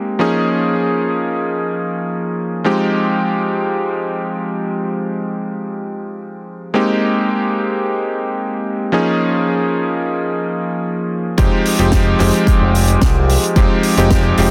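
Cosmic and groovy, this nu-disco excerpt in F minor moves at 110 BPM, opening with a bright, clangy electric grand piano up front, its chorused unisons and long sustain trailing a digital delay through chords from Eb7sus4 to Fm7 and Abmaj7. At 11.4 seconds the drop arrives as a punchy, layered electronic kick, a tight funk kit with a high-tuned snare and hi-hat, and a picked electric bass with an envelope filter and sidechain pumping all enter alongside the piano. The sound is dense and heavily limited, with light reverb, and the clip ends at 14.5 seconds.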